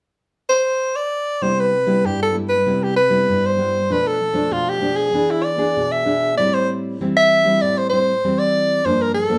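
Joyful and lively, this samba at 97 BPM in C major opens with a clear, close-miked soprano saxophone playing a jazz-style solo melody from 0.5 seconds, coloured by vibrato, subtone and scooped notes and set in plate reverb. At 1.4 seconds a full-bodied nylon-string guitar joins with fingerpicked accompaniment in a deep classical style, moving through Cmaj7, Bm7b5, E7, Am7 and Gm7. Both instruments sit up front, while the wet studio room gives a sense of being heard from further back, and the piece is cut from a longer performance.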